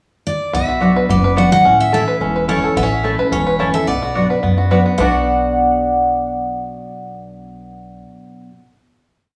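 A short, haunting and lonesome bluegrass piece in a swung 4/4 that opens on a brief pickup before the full band settles over a minor-key progression and rings out on a final chord around 5.0 seconds. A bright, jumbo-bodied steel-string guitar carries the up-front melody, built from motif-based period phrases with audible finger squeak, while a second guitar, a full-bodied dreadnought, supplies alternating bass and strum. The fingerpicked banjo sits up front too, its twangy, percussive three-finger rolls spinning arpeggios through the middle register. A woody, double-strung mandolin enters at 0.8 seconds with off-beat chops, and a dark, thumpy gut-string upright bass holds down a two-beat root-and-fifth pattern. The band plays live together in one room, with small room ambience under a wet, large studio reverb that gives the brief piece a lingering, spacious tail.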